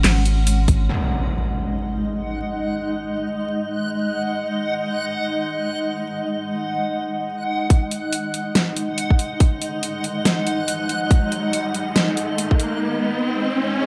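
Dusted with vinyl crackle and light reverb, this dark, heavy deep dubstep excerpt at 141 BPM moves in a swung half-time feel over a cloudy, evolving granular pad that sustains throughout, with a round sub bass heard only briefly at the start, an impact at 0.9 s and a reversed, dreamy swelling texture, before a tight electronic kick and a drum kit with a huge snare, bright hats, handclaps and ride return at 7.7 s for a build-up crowned by a riser from 10.1 s.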